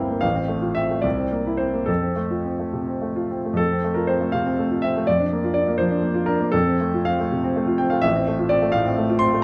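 Classical romantic character piece for solo grand piano in 6/8 with rubato, hopeful and lyrical in mood, its clear, smooth, slightly vintage tone with short sustain sitting up front through close, detailed microphones in a moderate recital-hall reverb, across a brief 9.4-second passage cut from a longer work that states its opening phrase twice.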